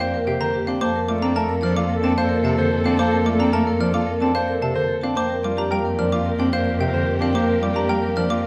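A wet scoring-stage reverb and a layer of vinyl crackle frame this short minimalist classical passage, which moves in a straight 4/4 at 110 BPM with a hypnotic, meditative mood. A metallic, ringing vibraphone struck with hard mallets carries the melody, its motor off and its tone caught in a boxy small-room character. A bright, polished baby grand piano and a woody, dry xylophone with wooden mallets both spin arpeggios, the piano intimate with audible action noise and short sustain, the xylophone dark and percussive. A rich studio string section holds sustained, bowed chords with expressive vibrato beneath a soft-toned clarinet second line that sits in the background, while a focused solo cello anchors the bass on a low F. A present bass clarinet joins as accompaniment at 0.3 seconds, and the harmony moves from Gm7/F to Bbmaj7/F before returning to Gm7/F at 5.2 seconds, all within a fragment cut from a longer piece.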